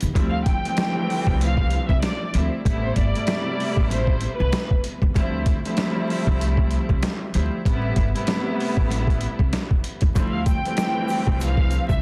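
Boom-bap hip-hop at 96 BPM in 4/4, swung on the sixteenths and set in D dorian, this tough, gritty piece is cut from a longer track. A compressed, pitched-down sampler-style drum kit sits up front, with a thumpy kick, a medium-tuned snare and hi-hat, all re-recorded in a large room. Pizzicato upright bass with a woody, steel-string tone holds the low end. Above it, a lush bowed string section carries the Dm11 and Am9 chords with smooth vibrato, sounding distant and trimmed at both ends by high-pass and low-pass filtering. A violin section states the melody from 0.3 to 4.7 seconds and returns at 10.3 seconds, its even tone shaped by the same filters and a tape echo. A grainy, bright egg shaker flickers in the background at the very start and again near the close, and the recording carries small-room ambience, vinyl crackle and a dense, heavily limited master.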